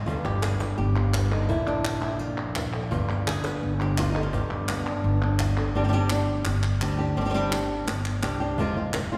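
Bathed in the long, wet reverb of a church or concert hall, this mournful, intense flamenco fragment at 169 BPM sets an up-front, boxy, fingerpicked guitar with fresh strings over a woody, pizzicato upright bass, joined by crisp palmas hand claps and a very quiet, vintage-sounding cajon played with soft hands and faint snares, which drops out at 5.8 seconds and returns at 8.6 seconds as the harmony shifts from G and Bb to Gsus4 and Fm.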